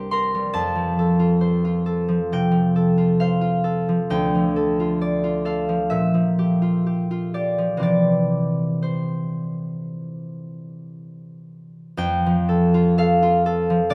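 Lightly reverberant and up front, this short cut from a longer classical piece features a solo concert harp, fingerpicked and ringing across a range from C2 to C6, drifting through a dreamy, serene passage in F major at a rubato 52-70 BPM in 4/4, moving from C7 to F, through Dm, Gm7/Bb and C, and returning to F at 12.0 seconds.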